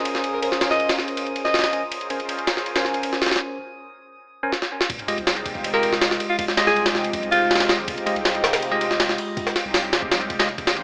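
A breathy, close-miked alto saxophone with jazz-style vibrato and subtone sings short solo phrases through a dub echo at 0.3 and again at 5.7 seconds, riding over a gritty, pitched-up jungle sampler-style drum kit with a thumpy kick and high-tuned snare in this atmospheric, raw drum and bass fragment at 161 BPM in F minor. A lush, detuned unison pad with chorus and phaser holds sustained chords while a bell-like tine electric piano stabs through a low-pass filter and dub echo, and a glassy, drifting harmonics texture hovers in the background until 3.4 seconds. After a break and drum fill, the drop at 4.9 seconds brings in a deep, round dub sub bass and a very quiet sub drop, the whole piece carrying a light reverb and an AM radio sound.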